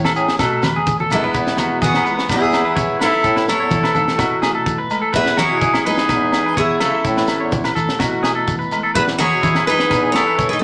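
Highlife guitar band at 126 BPM in E major, with a danceable, warm swing, cut from a longer piece: a tight funk kit with a high-tuned snare opens alongside a fingerpicked nylon-string guitar in the background and a twangy, slightly broken-up electric guitar playing arpeggios, while ringing agogo bells, a grainy shekere, dry bright congas and a punchy vintage bass clarinet fill in the groove. During a drum fill from 0.7 to 1.3 seconds, a bright, up-front picked steel-string acoustic guitar takes the melody and a present trumpet adds a second line over chords moving through E, Amaj7 and B7sus4, all set in a wet studio reverb.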